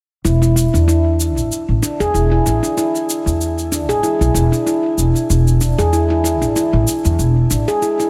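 A ringing handpan, struck with the fingertips and placed up front, spins meditative arpeggios between D4 and G#4 from 0.2 seconds, its nitrided-steel tone softened by a low-pass filter and trailed by digital delay and shimmer reverb. This short fragment of a longer piece is organic downtempo at 95 BPM in 4/4, with a gentle 55% swing on the sixteenths and an earthy, hypnotic mood resting on an E7(no3) chord. Underneath, a woody, gut-strung upright bass plays pizzicato between E1 and E2, dark and thumpy and also up front, carrying a filter sweep before it drops out at 7.6 seconds. A quieter electronic shaker, tape-warm and re-recorded in a small room, keeps time in the background. Light reverb and small room ambience give the whole an intimate, close feel.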